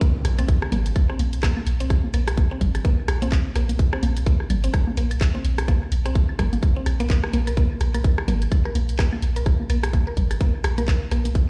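Heard through a big sound system in a bare stone room with lossy artefacts, this cool, quirky minimal techno excerpt opens on a drop at 127 BPM with a light 16th-note swing, as a tight, up-front electronic kick and a deep, punchy sine sub bass with a pitch-drop attack and sidechain pumping anchor the groove beneath a quieter garage kit of handclaps and warm hi-hats, tape-warm rim clicks, congas and claves through digital delay, a very quiet impact that lasts until 1.9 seconds, and a woody, round FM mallet pluck riff, bright with chorus, delay and pumping.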